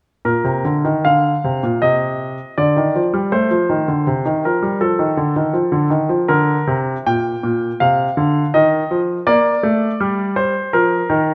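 Elegant and playful, this short excerpt from a classical-period piano sonatina moves at 81 BPM in 4/4 with a flexible rubato feel, set in Bb major and tuned to A4 = 442 Hz. A bright concert grand plays alone from 0.2 to 11.3 seconds, spanning Bb2 to G5 with a brilliant, polished tone, deep bass, short sustain and an up-front presence, passing through Cm and F7 before settling back on Bb. Close, detailed microphones capture the instrument within a moderate recital hall reverb of 1.4 seconds.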